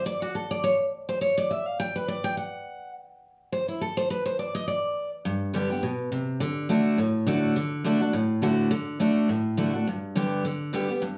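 A lone picked steel-string acoustic guitar opens this brisk, joyful bluegrass passage in G major, taking a solo line before any chords are set beneath it. Its dreadnought tone is full-bodied and sits up front, ranging from G2 up to G5 at a fast 208 BPM in 4/4 with a light swing on the eighth notes. At 5.3 seconds a new section begins and the harmony settles onto G, moves to D, and returns to G. The rustic feel comes through in the guitar's warm, picked attack, framed by a moderate studio ambience and a short studio reverb. This 11.2-second excerpt is cut from a longer piece.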